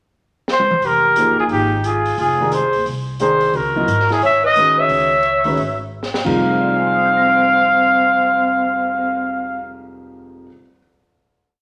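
Modal jazz in F dorian at 177 BPM with a swung 4/4 feel, hypnotic and spiritual over a short, complete piece that moves from Fm11 to Dbm11 and settles on a held Fm11 final chord at 6.3 seconds. An up-front trumpet with light vibrato and scooped notes states a motif-based melody in sentence phrases, joined by a breathy, subtone alto saxophone carrying a harmony line mostly in thirds. A woody pizzicato upright bass plays in a two-feel, an intimate grand piano comps in syncopated quartal voicings with audible action noise, and an open acoustic kit with dark cymbals, a high-tuned snare and a boomy kick keeps time on the hi-hat after a fill at 0.5 seconds, the group sitting in a large, wet studio reverb.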